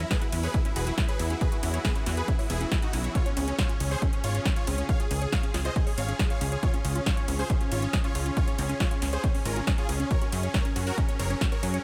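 A dry mix opens on a huge, bright supersaw lead at 138 BPM, a soaring, euphoric uplifting trance excerpt in Db major that pumps against the sidechain and trails tape echo as harmony moves from Eadd9 to Db at 3.2 seconds and Gbadd9 at 10.1 seconds. Beneath it, a funky, wave-folded analog bass, a tape-warm punchy kick entering at 0.1 seconds, and a layered dance kit with metallic hats, snare and ride drive the groove in 4/4. Further back, a lush, detuned unison pluck spins delayed arpeggios over an ethereal pad with octave-up shimmer, chorus and its own reverb.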